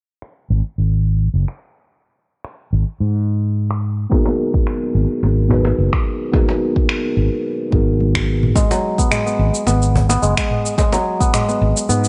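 A lightly swung 108 BPM groove in 4/4 drives this hypnotic, earthy organic downtempo piece in G# minor. An afro-pop drum kit of cabasa, finger snaps and toms sets the pulse with a dark, round fretless electric bass carrying tube saturation, sidechain pumping and a filter sweep. At 4.1 s a deep electronic kick drum, a woody, compressed cajon and muted, felt-like synth keys with chorus and delay join in. After a drum fill, a mellow, ringing, fingerpicked kora takes up filtered arpeggios at 8.6 s, all within a light digital reverb.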